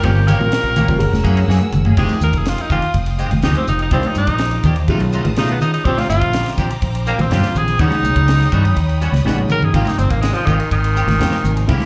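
Electric jazz fusion at 124 BPM in a slick, nocturnal mood, heard as a live club gig through the venue's PA with small room reverb, where a clear, vintage-toned tenor saxophone with light vibrato and scooped notes takes a solo from 2.0 seconds over a round, up-front fretless bass, a dark, boxy baby grand piano, twangy clean guitar stabs with ensemble chorus, lush distant strings, background congas and a crisp, airy drum kit with a high-tuned snare and punchy kick whose fills land at 1.5 and 9.1 seconds, as the rich extended chords move from Gm7b5 to Abmaj9.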